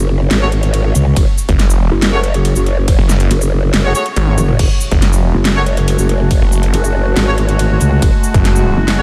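Locked into a half-time 4/4 pulse at 140 BPM, this chaotic, aggressive heavy wobble dubstep excerpt in F# minor opens on a growling, wobbling growl bass, saturated and formant-filtered, sitting up front with chorus and overdrive. A dubstep drum kit joins at 0.3 seconds with a huge snare, metallic hats, crash, ride, shaker and toms under studio reverb. A distant, roomy brass ensemble follows at 0.4 seconds with classical-style stabs carried on delay, and a punchy, tape-tinged electronic kick drum lands shortly after. A snarling, detuned sawtooth bass enters the low end at 1.5 seconds with distortion and a moving notch, while a brief drum fill around 4.3 seconds sets up the entry of an evolving wavetable pad at 5.3 seconds, its warbling, vintage chords breathing with sidechain pumping and chorus. The mix sits in light reverb and digital ambience, built over an F#madd9 harmony.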